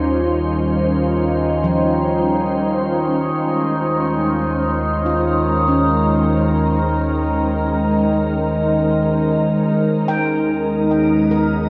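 A cassette-tape softness and a wet concert-hall reverb with a 1.9-second tail surround this peaceful, luminous ambient passage in free time, cut from a longer piece. Up front, a glassy FM pad holds sustained chords with a slow attack, long release and ensemble chorus, its tone ethereal yet dark, while an overtone-sweeping drone built from sawtooth, sine and ring modulation rings resonant beside it, its harmonics constantly shifting under chorus. Far beneath, a round analog bass sits on a single deep Eb2, its triangle and sine tone shaped by a filter sweep. At 1.6 seconds a nitrided-steel handpan enters with airy, ringing arpeggios, struck with sharp finger strokes and trailed by delay, its bright, meditative voice set lower in the mix. The harmony drifts from Eb13 to Bbm11/Eb at 3.4 seconds and then to Abmadd9/Eb at 9.9 seconds, while the handpan and the bass fade out across the whole passage.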